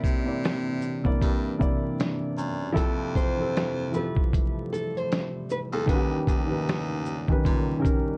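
At 77 BPM in 4/4, with a 60% swing on the sixteenths, a lo-fi sampler-style drum kit sits up front, pitched down and compressed, pairing a thumpy kick with a medium-tuned snare, hi-hat and shaker in this melancholic, hazy lo-fi hip hop excerpt, slightly flat of standard tuning at A4 = 436 Hz. An edgy baritone saxophone takes the bass role from D#2 to C3 until 7.8 seconds, forceful and punchy in a jazz style, with vibrato and scooped notes. A felt-muted upright piano, soft and intimate with audible action noise, carries the accompaniment up front through a low-pass filter, while a nylon-string guitar plays a bright, fingerpicked classical melody between G4 and E5, finger squeaks included. Deep in the background, a moody ambient pad built from sawtooth and sine layers with a sub octave holds sustained chords, with a slow attack and long release, along with chorus and its own reverb. The harmony moves from C9 to Fmaj9 at 2.8 seconds and D#7b13 at 5.9 seconds, all set in a dark production with moderate studio ambience and vinyl crackle.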